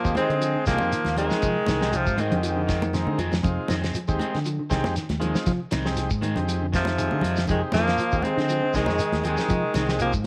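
A driving, defiant afrobeat groove at 119 BPM in 4/4 rolls with a light 16th-note swing, built on a cloth-damped, thuddy drum kit with a fat snare and tight kick, a punchy fingered electric bass, background congas with a thick, damped skin, and a grainy shekere, all sitting on a single Fm7 in F dorian. A buzzy vintage combo organ and a dark, clean electric guitar playing very quiet arpeggios fill the middle, while a second twangy guitar at the edge of break-up adds faint picked stabs. Up front, a bright alto saxophone with vibrato carries the melody over a brilliant trombone second line; the horns drop out at 3.2 seconds and return around 6.8 seconds, in this excerpt of a home cassette recording with light studio reverb.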